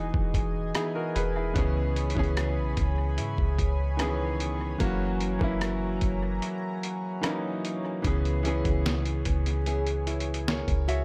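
Contemporary R&B with a late-night, moody feel, this short excerpt from a longer piece sets a clear, intimate baby grand piano with audible action noise against a shimmering, chorused pulse-width pad holding sustained chords and a bright nylon-string guitar playing fingerpicked arpeggios through analog delay. Underneath, a deep, round 808-style bass and a gritty, sampler-style drum kit with a thumpy kick, fat snare, hi-hat and rim click sit up front, the drums entering at 0.1 seconds. The echo-heavy digital ambience frames a break from 6.4 to 8.0 seconds before a new section begins at 8.0 seconds on a minor seventh chord.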